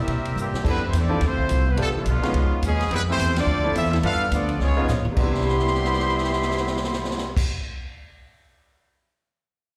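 Big band swing at a brisk 212 BPM in C major, this energetic, brassy fragment of a longer piece features a clear, close-miked trumpet section carrying the melody with light vibrato over a smooth trombone section's second line, both touched by slapback echo, while a woody pizzicato upright bass sits up front. A swinging kit with dark cymbals, a punchy kick and drum fills drives the band through a rich progression of Fmaj13, Dm9, G9 and Db7 chords, with a band accent at 3.3 seconds, and an intimate grand piano with audible action noise enters at 0.6 seconds. The sound is that of a live gig heard through the venue's PA, set in light recital-hall reverb, and the drums ring on alone until 8.9 seconds.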